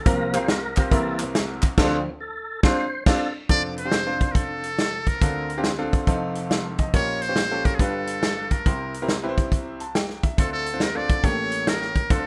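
A tonewheel organ opens this jubilant uptempo gospel cut at 139 BPM in swung 4/4, its full, lightly overdriven chords turning through a slow rotary speaker with chorus vibrato, over bright concert grand piano, a punchy natural drum kit and a brief burst of crisp group handclaps, with a band accent from 1.8 seconds. The organ drops away just before 3.5 seconds, when a buzzy, metal-muted trumpet takes the melody with slapback echo, vibrato and scooped notes in a jazz style, while the brilliant piano with its deep bass keeps up the accompaniment through chords such as Bbm6, G7 and A7b9. The rough home demo mix carries light reverb, and the uplifting mood holds until the fragment breaks off at 12.3 seconds.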